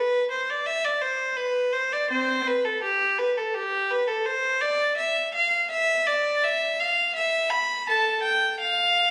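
Solemn and grave, this short cut from a longer piece is a baroque-style suite movement for unaccompanied violin, played with a flexible, rubato feel in 4/4. A single bowed violin carries everything alone for its 9.1 seconds, ranging from C4 up to B5. The player uses a period style with light vibrato, and the gut-string tone comes across as rich with a reedy edge, sitting up front in the sound. The violin rings in a moderate recital hall reverb, with an added club reverb on top. The recording was captured on a phone in the room and compressed.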